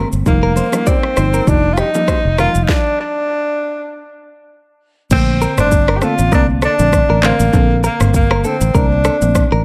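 A soft, round synth pluck with chorus and analog delay, a bright, clean electric guitar riff and a dark, foam-muted fingered bass open this joyful, sunny afrobeats piece at 99 BPM in Bb major, soon joined by a produced electronic drum kit with a deep kick, sharp snare, handclaps and shaker, a breathy, punchy, up-front tenor saxophone with vibrato and scooped notes, and very quiet vintage congas and bongos that drop out at 2.5 seconds, before a stop from 2.7 to 5.1 seconds gives way to a Bbmaj9 section in an echo-heavy mix with light reverb.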